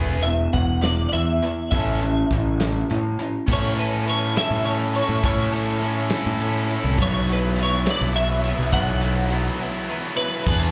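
Upbeat and carefree, this short indie rock passage in 6/8 sounds like a live club gig through the venue's PA, with a bright, twangy twelve-string electric guitar carrying the melody over slapback echo, chorus and delay, a double-tracked overdriven stack guitar riffing up front, a punchy fuzz bass driving underneath, and a loose, rolled-off indie drum kit of kick, snare, hi-hat and crash, all moving from E to A and then to Bsus4 before a brief break at 9.6 seconds.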